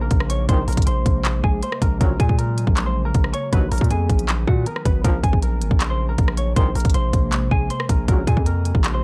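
A mellow, clean electric guitar melody with tape echo drifts over a glassy, warbling FM pad washed in ensemble chorus and reverb, while a heavy, saturated 808-style bass hits up front and a crisp trap kit of hard-clipped kick, hi-hats, handclaps and rim clicks drives a half-time groove, with brass-ensemble stabs bearing light vibrato arriving at 0.5 seconds to deepen the dark, hard-hitting mood of this cut from a longer hip hop track.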